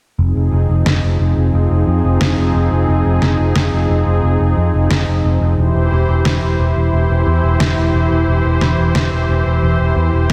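A brassy analog pad and a picked electric bass open this moody, nostalgic synthwave excerpt together at 0.2 s. The pad holds sustained chords built from detuned sawtooth tones, with a soft attack and filter swell and a bright, warbling, vintage character colored by chorus, vibrato and ring modulation. Beneath it, the bass sits up front with a growly, punchy, amped tone, shaped by tube saturation and a low-pass filter. A fat, sampler-style electronic snare joins at 0.9 s, overdriven and re-recorded in a small room, within a straight 4/4 feel. The harmony rests on Fm7 before moving to C/E at 5.6 s, with the tuning set slightly low at A4 = 438 Hz. A lush hall reverb soaks the whole mix, lending it a dreamy quality through to the cut at 10.3 s.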